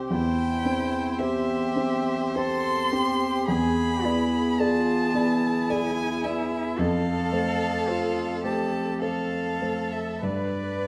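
Heard in a reverberant recital hall with a dark, warm production, this short excerpt from a slow romantic movement for piano quartet has a tender, warm mood. It moves at 53 BPM in 3/4, with uneven beats and rubato, in C major. A violin with a rich, smooth vibrato sings the melody high above, entering at 0.1 seconds. A second violin with a clear, focused, close tone and a cello that sounds even and distant share the inner second line. Up front, a baby grand piano supplies the accompaniment with a worn, long-sustaining tone that spans from low bass into the middle register. The harmony moves from C over E through E7 and F, arriving on G at 10.2 seconds as the passage is cut off.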